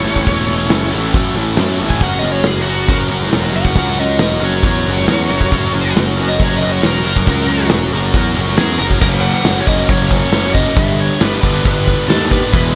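A biting overdriven guitar takes a solo with tape echo over a thick, double-tracked fuzz guitar riff, a round fuzz-picked electric bass and a loose, punchy indie drum kit in a pumping small room, driving this jangly, upbeat indie rock excerpt at 137 BPM from A through F# to G, with the solo running until 9.0 seconds.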